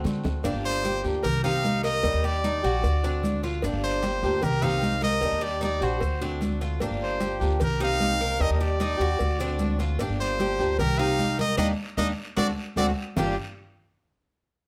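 Sultry and warm, this Cuban son and guajira excerpt cycles through a Gm7, Cm7, Ebmaj7, D7 progression, with a brilliant, punchy trumpet carrying the melody up front with light vibrato from 0.7 seconds. Beneath it, a woody, thumpy pizzicato upright bass, a boxy picked swing-style acoustic guitar with finger squeak, and a metallic Cuban tres playing arpeggios on double strings fill out the harmony, while hard-hand congas with a thick skin join a percussion bed of round, low-tuned bongos and cowbell, a raspy guiro and grainy, very quiet maracas. A drum fill opens the passage, and a band accent from 11.6 to 13.2 seconds gives way to a closing G7 chord in a moderate studio reverb.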